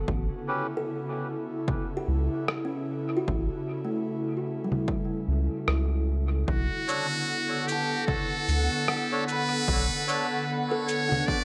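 A hazy, meditative ambient dub passage at 75 BPM opens with an airy, breathy pad holding sustained chords through a chorus effect, while a woody, hollow-sounding kalimba spins arpeggios through tape echo and a deep, round sub bass sits up front with a touch of tube saturation. A punchy, overdriven electronic kick enters almost at once, and the harmony rests on A7 before moving to Bm7 at 6.5 seconds. From 1.7 seconds, muffled, pitched-down congas, rim click and cabasa with a sampler-style grain add a swung sixteenth-note pulse soaked in dub echo. A reedy, nasal melodica drops a brief stab early on, then returns with filtered stabs and dub echo from 6.9 seconds. Just before that, at 6.5 seconds, a buzzy, brilliant trumpet with a metal mute arrives, close-miked and up front, carrying the melody with tape echo into the moderate echo-chamber space of this fragment from a longer piece.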